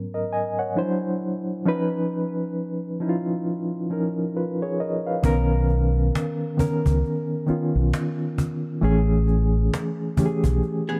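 R&B with a neo-soul lean, this brief excerpt moves at a slow 67 BPM in 4/4 with a swung sixteenth feel, carrying a smooth, sultry mood. A reedy electric piano with a fast tremolo plays throughout, clean and up front, moving through chords such as G#m11, D9 and C#9. At 5.2 seconds a deep, round fingered dub bass and a snappy cajon with snares enter together, the cajon sounding acoustic in a small room. The harmony settles onto Bmaj9 and then Amaj7 near the close, and at 10.9 seconds a dark, compressed hollow-body archtop guitar adds a brief picked second line. Light reverb and a dark, warm production give the whole passage an intimate, late-night glow.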